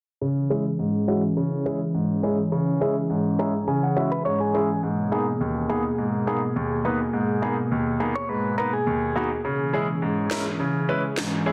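A straight 4/4 pulse at 104 BPM drives this tough, sultry dancehall excerpt in C# dorian, where a clear, up-front grand piano comps over an airy, breathy pad of detuned, chorused sustained chords, both under a filter sweep as the harmony moves between C#m and G#madd9. The piano adds a fill at 3.1 seconds, and a bright, twangy clean electric guitar recorded direct picks compressed arpeggios from 4.1 seconds. A sharp electronic snare with finger snaps arrives only at 10.3 seconds, all set in light digital ambience and a dense, heavily limited modern master.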